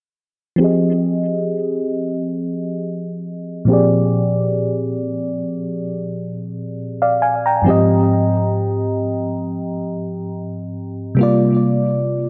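A mellow, warbling vintage FM electric piano with a noise layer sits up front in light reverb, playing solo from 0.6 to 12.3 seconds through a low-pass filter and delay in this slow, late-night R&B excerpt at 68 BPM in F dorian, its fast-attack, decaying chords moving with a lightly swung sixteenth feel through Fm9, Bb13, Fm9/Ab and C9sus4 in a mood of longing.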